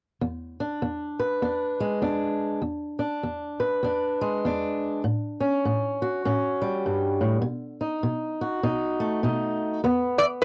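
Swung eighths at 100 BPM in 4/4 drive this laid-back, swaggering blues cut from a longer piece, where a dark, boxy fingerpicked acoustic guitar sits up front moving through E7, A7 and B7 from 0.2 s, and a nasal, metallic resonator slide guitar played with fingerpicks touches a D5 at 10.2 s, both captured on a home cassette recording with moderate booth ambience.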